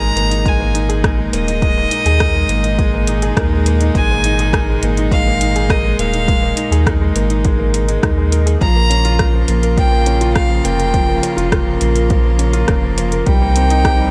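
A reedy, gut-strung violin melody with digital delay opens this hopeful, tender piano-and-strings electronica excerpt in Ab major at 103 BPM, alongside an intimate string quartet holding airy, sul tasto chords and a round analog bass, both pumping with sidechain, plus a brilliant baby grand piano riff echoed by delay, before a deep house kit of overdriven metallic hi-hats and rim clicks enters at 0.2 seconds and a punchy, overdriven electronic kick joins at 0.5 seconds, the drums set in studio reverb while the harmony moves from Absus2 to Bbm and on to Cm7.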